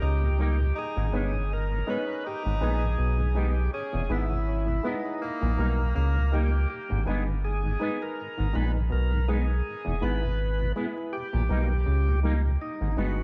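A meditative, laid-back reggae groove at 81 BPM in G# harmonic minor, cut from a longer piece, opens on a band accent before settling into a swung, echo-heavy cycle of G#m, E and D# chords. A gritty, overdriven tonewheel organ carries the melody through a slow rotary speaker and tape echo, while a distant, roomy tenor saxophone with light vibrato adds a second line until 6.5 seconds. Beneath them sits a deep, round dub sub bass up front, with an overdriven clav riff, a flute-like tonewheel organ with chorus vibrato, a twangy, scooped envelope-filtered guitar and hollow, decaying organ stabs tucked into the background under light reverb and digital ambience.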